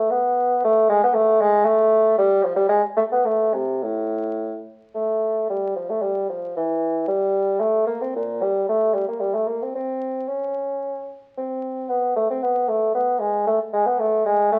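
In a rubato 3/4 that drifts between 105 and 118 BPM, a lone bassoon plays a grave, introspective baroque-style fantasia in A minor, cut from a longer piece and running 14.6 seconds. The dark-toned bassoon sits up front with a light vibrato, moving between A2 and C#4 in a classical manner. A stone room reverb of about 1.1 seconds lends it a roomy, distant air, while the crackle of a very old 78 rpm record gives the sound its aged character.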